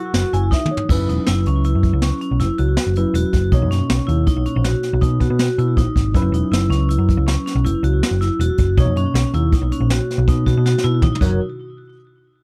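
A faint, dark hollow-body jazz guitar and a distant flugelhorn with vibrato sound only in the first half second, while a worn, slightly out-of-tune tine electric piano with lush chorus plays a fill and a ringing vibraphone begins arpeggios through tape echo. This bright, driving progressive instrumental in 7/4 keeps a straight feel throughout, with a round, amped hollow-body bass and boomy brushed drums with dark cymbals up front, and the mellow piano accompanies on suspended and major-ninth chords. The sound is a dry, close 1970s-style studio recording, and a drum fill from 10.7 seconds leads to the music breaking off at 11.4 seconds.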